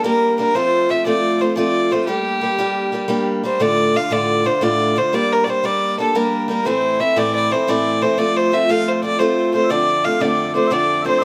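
Celtic folk in a straight 9/8, this short cut from a longer piece feels driving, dark and lively. A single bowed fiddle carries the melody up front, its nasal, reedy gut-string tone sounding clear and close. A picked steel-string parlour guitar plays the accompaniment alongside it from the start, with a woody, boxy sound from old strings. At 9.6 s a solo small bagpipe adds a sweet, mellow second line with vibrato, held continuously in the background until the end at 11.2 s. The harmony moves from G minor through F, D minor and A minor before settling on F6, all within a moderate studio ambience.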